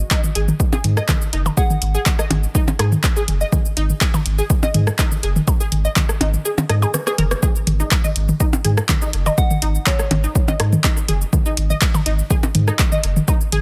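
A squelchy, nasal blip pluck riff with lush chorus, digital delay and sidechain pumping rides a deep, thick sub bass that also pumps in this quirky, cool minimal techno excerpt at 123 BPM, where a punchy, overdriven electronic kick sits up front beside an overdriven analog drum machine's handclaps, hi-hat, rim click and shaker and an overdriven click kit of percussion blips, rim clicks and toms with delay, the kick dropping out at 6.5 s for a drum fill, while a soft, pure FM bell with chorus and phaser chimes briefly at 1.6 s and 9.4 s in a dry mix.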